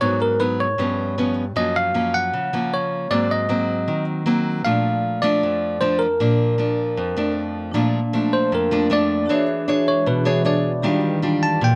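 Bossa nova at 155 BPM in a straight 4/4, romantic and breezy, cut from a longer piece. A bright, barky tine electric piano carries the melody up front with a clean, bell-like directness, taking a solo from 7.7 seconds. Beneath it, a fingerpicked nylon-string guitar with fresh strings gives small, acoustic accompaniment, sitting close and up front through the whole passage. A vibraphone struck with medium hard mallets joins at 7.7 seconds, metallic and ringing with a slow motor vibrato. A deep, moody pad of detuned sawtooth unison and a sine sub octave arrives at 9.7 seconds, holding dark sustained chords in the background with a slow attack, long release, chorus, phaser and its own reverb. Otherwise the sound is dry and detailed, moving through chords such as Abm7, G7#11 and Gbmaj7 before settling on Ebmaj9.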